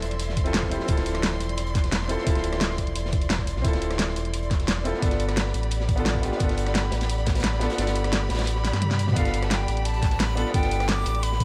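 A short, soulful and dreamy liquid drum and bass excerpt opens with a warm grand piano through dub echo over lush bowed strings that pump with sidechain, a deep, full sine sub bass up front, a fat layered pop kit and a dark, saturated breakbeat kit sitting in the background, joined at 0.4 seconds by a gritty, thumpy electronic kick that drops out at 7.8 seconds, with a drum fill arriving at 8.6 seconds, before a breathy, bright jazz flute with a crisp chiff and delay enters at 9.2 seconds over the G7 chord that follows the earlier Dm9.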